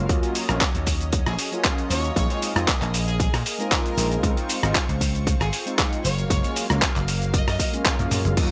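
A round, amped vintage slap bass drives this groovy, sensual nu-disco excerpt at 116 BPM, sitting up front beside a gritty, compressed sampler-style drum kit and a punchy, overdriven electronic kick, with a drum fill at 8.0 s. Mellow synth brass with a dark, detuned sawtooth tone, filter sweep, chorus and analog delay plays accompaniment, while a lush, airy unison pad sustains chords in the background with chorus and sidechain pumping over Ebm7, Bb7sus4, Dbmaj7 and Gbmaj7. From 1.3 s, a clear chamber violin section carries an intense, bowed melody with vibrato and tape echo, all in a dry hardware recording with digital ambience.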